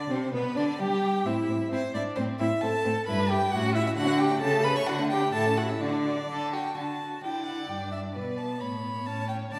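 A straight 2/4 pulse at 131 BPM drives this graceful, lively classical-period movement for string quartet, a passage cut from a longer piece that settles into D major at 3.1 s and moves into a new section at 6.8 s. The first violin carries the melody close and up front with a smooth tone and light vibrato, the second violin adds a focused line beneath it, the viola's expressive accompaniment sounds distant with vibrato and portamento, and the cello holds the bass with an even, up-front tone. All four bowed instruments sound rich, set in a recital hall's ample reverb and heard from further back in the room.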